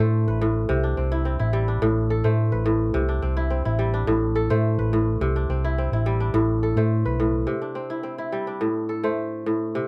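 Warm and flowing, this short fragment of West African string and xylophone music sets a fingerpicked kora, crisp and ringing, up front with arpeggios that circle between A minor and C major. A round, dark hollow-body electric bass sits close beside it until 7.4 s, after which the kora carries on alone to the close at 9.9 s. Close, detailed miking with a light touch of reverb keeps every plucked note clear.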